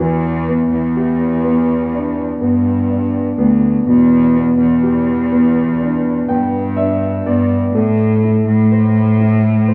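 Melancholic and longing, this short pop passage, cut from a longer piece, pairs a deep-bassed concert grand piano with open, long-sustaining chords against a bowed chamber cello section that carries the bass line with an earthy, clear tone and light vibrato. The harmony rests on Em7 before moving to Am at 7.7 seconds, just after a piano fill that runs from 5.8 seconds. Both parts sit up front in a stone room whose wet reverb gives the live ensemble playing a lingering, spacious tail.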